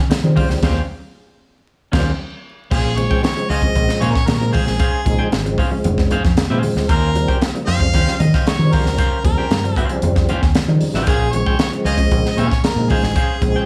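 A straight 4/4 funk groove, funky and hypnotic, rides on a crisp fusion drum kit with a high-tuned snare and punchy kick alongside a deep, round fingered electric bass, while very quiet soft-handed congas, a clean semi-hollow guitar with a warbly pitch drift and a fat, lightly overdriven tonewheel organ playing stabs through chorus vibrato and a slow rotary speaker fill out the texture from the start, the band hitting an accent from 0.6 to 2.7 seconds, after which a clear harmonica with light vibrato carries the melody over small room ambience touched with vinyl crackle and studio reverb.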